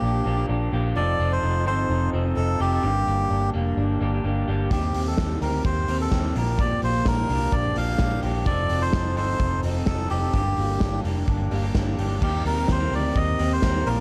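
Over a straight 4/4 pulse at 128 BPM, this youthful, bright fragment of jangly indie pop pairs a reedy, breathy, close-miked melodica melody with two slightly broken-up electric guitars through a small old amp, one picking lo-fi, compressed accompaniment and the other picking twangy arpeggios through spring reverb, plate reverb and digital delay, while a round, foam-muted fingered bass sits up front and a raw garage drum kit with a punchy kick and rolled-off top joins at 4.7 seconds, all moving through Bb6, F7, Gm and Eb6.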